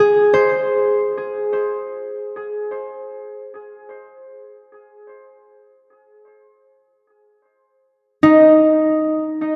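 A lush, wet hall reverb with a 2.7-second tail soaks this dreamy, ambient recording, cut from a longer piece. A solo concert harp plays in free time from 0.0 to 9.6 seconds, sitting up front in the mix with an acoustic, ringing tone and a touch of analog delay. Fingerpicked in a compact span from Eb4 to C5, it suggests a rootless F minor that gives way to a chordless stretch at 5.9 seconds. The mood is serene yet melancholic, the harp's warmth blurring into the reverberant space.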